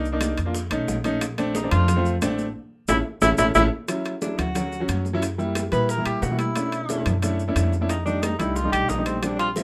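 Light reverb gives this lively, danceable Afro-Cuban jazz excerpt at 180 BPM a natural sense of space, with a short-sustain baby grand piano comping up front alongside a woody, growly pizzicato upright bass, while bright, high-tuned congas and tight bongos sit in the background with grainy, saturated maracas and close, dry, ringing timbales. A tenor saxophone, roomy and distant in tone yet placed up front, takes the solo from 1.6 s with light vibrato and scooped notes. A band accent and drum fill lead into the settle on D major at 3.9 s, where rich extended chords carry the groove onward.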